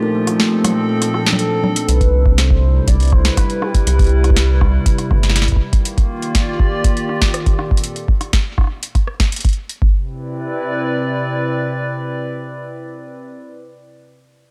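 A dry, gritty hardware recording with cassette tape and transformer saturation frames this playful, intricate IDM excerpt in C major, moving at 121 BPM in a straight 4/4. It opens on a brief break where a woody, ringing kalimba plays arpeggios through tape echo in the background until 1.8 seconds, beside a velvety sawtooth lead with chorus, vibrato, portamento and analog delay carrying the melody. A hollow, flute-like pad with chorus holds sustained chords throughout, moving from Bbmaj7sus2 to Cmaj7, Ebmaj9, Bbmaj9 and finally Cmaj9. At 1.9 seconds a rubbery, bouncy square bass with tube saturation arrives prominently, and from 2.0 seconds a deep, up-front electronic kick joins the analog drum machine's congas, metallic hi-hats, rim click and punchy snare. The lead stops at 5.1 seconds, and the drums fall away near 9.9 seconds, leaving the mellow pad alone to close out the passage.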